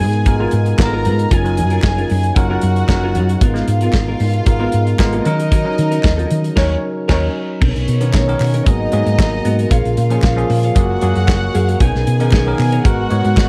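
Dark, sul tasto strings, a bell-like tine electric piano, a clean semi-hollow guitar tucked in the background, a loose French horn section holding sustained chords, and a round, punchy hollow-body bass open this sultry, danceable disco excerpt, with an up-front acoustic drum kit with a tight kick joining at 0.1 seconds and crisp group handclaps following at 0.8 seconds. The harmony moves through lush minor six-nine and major-seventh chords such as G#m69 and F#maj7 before shifting at 7.6 seconds to a passage built on Bmaj9 and G#m9. A band accent from 6.6 to 7.6 seconds marks the turn, all set in a dark, warm studio sound.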